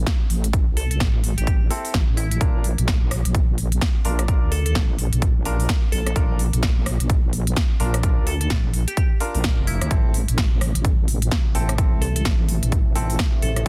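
Bouncy and aggressive, this short bass house cut from a longer piece rides a swung 4/4 groove. A heavy, dark wobble bass sits up front from the opening moment, its detuned sawtooth tone saturated with tube grit, thickened by chorus and pumping against the punchy electronic kick, which lands just after it and carries a tape-warm, large-room character. The big-room dance kit adds a punchy snare, rim clicks and crisp hi-hats, while a glassy, crystalline wavetable pluck enters at 0.8 seconds with bright, decaying notes washed in chorus and delay. Clear, slightly worn baby grand piano stabs arrive at 1.7 seconds, filtered, delayed and pumping with the sidechain, as the harmony moves from A minor to B-flat. At 9.9 seconds an evolving, resonant pad swells in the background, its wave-folded tone colored by chorus and phaser as the chords return to A minor. The mix is dry, dense and heavily limited, with a loud, modern punch.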